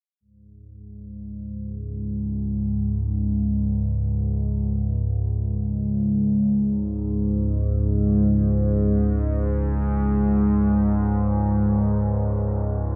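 Ambient fragment with a dark, desolate mood, carried by a single analog drone that enters at 0.9 s and sustains to the end at 13.0 s, low in the register between C#2 and G#2. The drone's sawtooth and pulse-wave tone evolves through pulse-width modulation and a moving notch, with a slow attack, long release, and chorus and delay, sitting mellow and up front. A huge ambient reverb with a 9.1-second decay surrounds it with a vast, lonely space.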